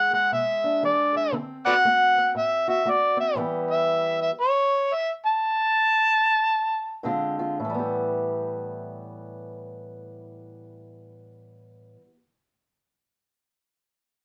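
Swaggering and laid-back, this short cut from a longer acoustic country blues piece has a loose swing feel in four. An overdriven, amplified harmonica carries the melody up front, its gritty tone shaded with light vibrato, soft attacks, scooped notes and tongue slaps in a jazz-inflected solo style. Beneath it, an old ladder-braced acoustic guitar is fingerpicked on old strings, giving a dark, woody, boxy accompaniment that sits close in the mix. The harmony moves through E7, D7 and A7sus2, and the pace slows between 3.4 and 7.6 seconds before the harmonica drops out at 7.0 seconds on a Bb9. From 7.6 seconds the guitar carries on alone over Asus2 in a light reverb until the end at 12.1 seconds.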